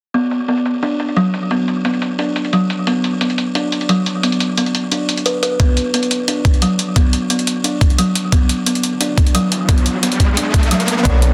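Melancholic and lush, this liquid drum and bass passage opens on an up-front buzzing kalimba playing woody, ringing arpeggios through a low-pass filter and delay, over gritty, sampler-style electronic hi-hats, with a filter sweep moving across the drums. A thumpy, compressed kick arrives at 5.6 seconds, an electronic riser builds from 9.5 seconds, and at 11.0 seconds a dark, clean hollow-body jazz guitar appears, followed a moment later by a deep, round sine sub bass. Moderate plate reverb and digital ambience surround a dense, heavily limited modern master.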